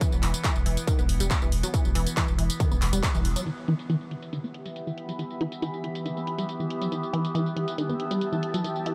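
Lightly reverberant and compact, this clip from a longer driving, industrial peak-time techno track opens mid-drop with a distorted, overdriven electronic kick and a thick, saturated sine sub bass, the sub pumping against the groove. A squelchy, resonant blip pluck carries the riff through phaser, tube saturation and dub echo, while a nasal, sawtooth-and-sine drone with moving overtones sustains underneath in a chorused haze. An overdriven techno kit of handclaps, hi-hat and tambourine, its hats and percussion dulled by low-pass filtering, keeps the straight pulse going throughout. The band hits an accent just before the kick stops at 3.1 s and the sub bass falls away soon after, and from 3.5 s a filter sweep moves across the synth line. A cloudy, blurred granular pad with a mellow, slow-blooming sine tone enters in the upper register at 4.6 s, lending the stripped-back second half an evolving shimmer.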